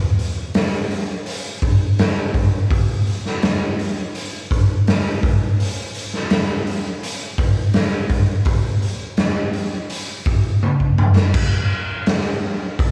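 A raw, gritty garage drum kit plays alone up front in this brooding, cathartic rock fragment in straight 4/4, its punchy kick, medium-tuned snare, hi-hat, toms and crash cymbal sounding saturated with a rolled-off top in a small room with light reverb, and a drum fill at 10.6 s carries it into a new section at 11.3 s before it ends at 12.9 s.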